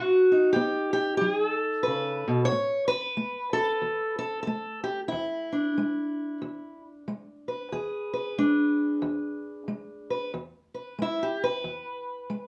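Gritty and soulful, this short acoustic country blues excerpt swings easily in four as a dark, boxy parlour-style fingerpicked steel-string guitar sits up front in a small, reverberant room, moving from B7 through A5 to E7 before its solo turn arrives at 10.3 seconds on an E chord.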